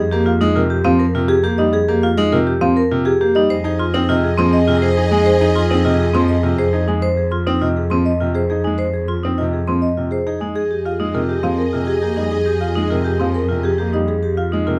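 Hypnotic and urgent, this minimalist classical pattern piece in F minor moves at 102 BPM in 3/4, with a woody marimba carrying the melody over ringing, metallic vibraphone arpeggios struck with hard mallets, a boxy grand piano accompaniment and a rich, bowed solo cello holding F2 up front, while a dark French horn second line and lush sustained studio strings join at 3.5 seconds and again at 10.6 seconds, heard in a dry, closely miked room.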